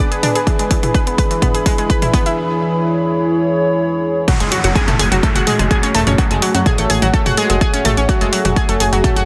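Driving and dark, this melodic techno cut in F# minor moves at 126 BPM, opening with a build-up and drum fill where a detuned analog pluck plays bright, warbling arpeggios up front over the sustained chords of a moody, wave-folded analog pad, a deep, dark ambient pad with its own reverb in the background, a house drum kit with warm hats and toms, and a punchy electronic kick. All three synths carry chorus and sidechain pumping, and the pluck also trails a digital delay. At 4.3 seconds the drop lands on an F#madd9 chord, with a background downlifter and a funky, tube-saturated plucky analog bass entering at 4.4 seconds in the low register, all inside a light reverb.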